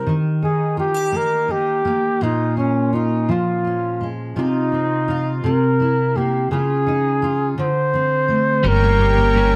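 A mellow, jazz-style flugelhorn with gentle vibrato and a smooth top sings the melody from the start of this melancholic, dramatic six-eight pop ballad at 56 BPM, over a full-bodied, double-tracked fingerpicked steel-string acoustic guitar with fresh strings, both up front in a small room with light reverb. The harmony moves through Eb, Bbm7, F5/C, C7, Dbadd9 and D5 before landing on Gdim at 8.6 seconds, where a woody, thumpy pizzicato upright bass and a clean, compressed electric guitar playing arpeggios in the background join in. From 8.7 seconds, a pipe organ's soft, shimmering strings celeste stops add sustained chords in a romantic voicing as this fragment of a longer piece cuts off.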